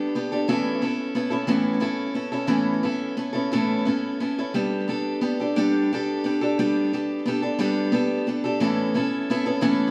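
Set in 6/8 at 59 BPM counted in dotted quarters, this brief rock excerpt features a single picked steel-string acoustic guitar, boxy and parlour-sized, sitting up front with digital delay as it rings through Aadd9 and Gadd9 before returning to Aadd9 at 8.6 seconds. The mood is jangly and warm, and a generous large-studio reverb gives the live-in-one-room sound a spacious, airy halo.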